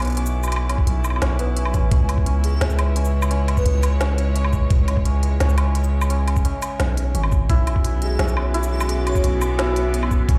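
Spacious and heavy, this half-time drum and bass excerpt rests on a deep, up-front 808-style sine bass and a gritty, thumpy pitched-down kick entering at 0.8 seconds, while a woody-snared kit with crisp hats, shaker and woodblock drives alongside biting, bowed studio strings pumping on sidechain, a shimmering hammered santur arpeggiating through dub echo, an airy, dreamy lead drifting in the background at 2.4 and 8.0 seconds, and an eerie, metallic FM drone surfacing at 4.7 seconds, all within a big, bare-room reverb.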